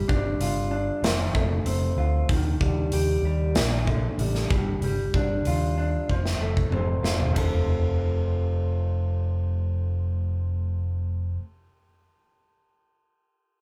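A straight, steady 4/4 pulse drives this restless, bittersweet alternative rock passage, cut from a longer piece that trades between quiet and loud dynamics. A dark, slightly broken-up electric guitar played through a small old amp picks out lo-fi, compressed arpeggios, moving through chords built around G, F, E-flat and B-flat. Beneath it, an overdriven fingered electric bass sits up front with an amped, punchy tone. A big acoustic rock kit, recorded in a large room, is also placed up front, with bright cymbals across hi-hat and ride, a medium-tuned snare, a punchy kick and toms. The kit rolls into a drum fill at 6.1 seconds and drops out at 7.5 seconds, leaving guitar and bass to carry on into a new section. The band sounds like it is playing live together in one room, with little reverb.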